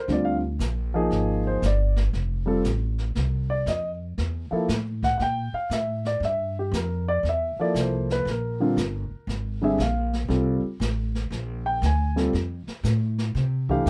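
This short excerpt of a jazz piano trio opens with a dark, mellow concert grand carrying the melody, soloing from 0.0 seconds across a range from D3 up to Ab5. Upright bass and a brush drum kit join at 0.1 seconds, settling into a swing at 118 BPM in 4/4 with a swung eighth-note feel and a swinging, warm mood. The bass is plucked, woody and thumpy on gut strings, sitting up front beside the piano, whose deep low register gives the trio a rich bottom end. The drums sound more distant and roomy, as if in a small room, with brushes on a medium-tuned snare, hi-hat and a boomy kick, their top end rolled off. The harmony moves from Bb7 through F and C7, then Bb7 with the third omitted, before cycling through F, Bb and F to land on C at 13.4 seconds, all in a dry sound with little reverb.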